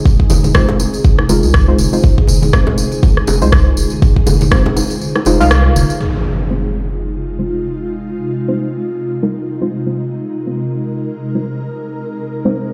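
This afro house excerpt runs at 121 BPM in F minor pentatonic, with a swung 16th-note feel and a warm, driving mood, opening on an Fm7 chord. An up-front electronic kick drum anchors the groove alongside a round, dark analog bass with sidechain pumping, while a produced electronic rim click sits behind a low-pass filter. Acoustic percussion fills out the rhythm: low-tuned congas in the background, tight high-tuned bongos played with soft hands, and a jingly, close, dry tambourine. Above them, a deep, mellow chord stab with a vintage, warbling chorus and digital delay pumps alongside an ethereal, airy pad of detuned unison voices with a slow attack and long release. The kick drops out at 5.0 seconds, and after a band accent the rhythm section falls away as an electronic impact arrives at 6.0 seconds. From there the pad and stab carry the second half, joined briefly by the impact, as a filter sweep works over the stab, all set in a large studio reverb.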